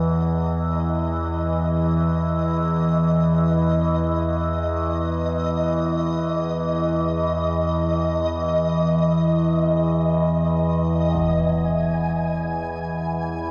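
In free time, this vast, ominous dark ambient drone excerpt sets an up-front, resonant sawtooth-and-sine drone with moving overtones and chorus against a grainy, flickering, detuned triangle texture that fades in high above it until 11.1 s, when a huge, dark impact sounds in the background and the harmony settles on E, all bathed in an enormous, wet reverb.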